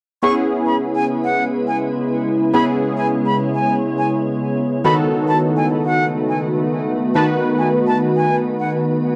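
A silver concert flute, airy and gently unsteady with vibrato and tape echo, carries a carefree, euphoric pop melody in E major at 104 BPM, over round, detuned analog keys with chorus and a glassy, warbling FM pad that enters at 0.7 s, all soaked in a small room's wet reverb and cassette tape color in this short home-recorded cut.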